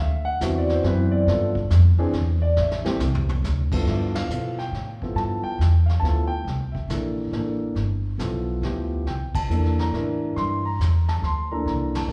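A swung three-beat lilt carries this relaxed, warm jazz piano trio, cut from a longer piece. The upright bass sits up front with a woody, thumpy pizzicato tone, and the brush drum kit joins at 0.4 seconds with mellowed cymbals, a tight kick and a rolled-off top, sitting further back. The concert grand leads the melody with a dark, natural voice and deep low end, taking a solo turn through the opening 3.9 seconds while the drums slip in a fill at 2.6 seconds. From there the trio moves through rich extended harmonies, with band accents landing together along the way. The whole group sounds as if it were captured in a church or concert hall, surrounded by a gentle, lingering reverb.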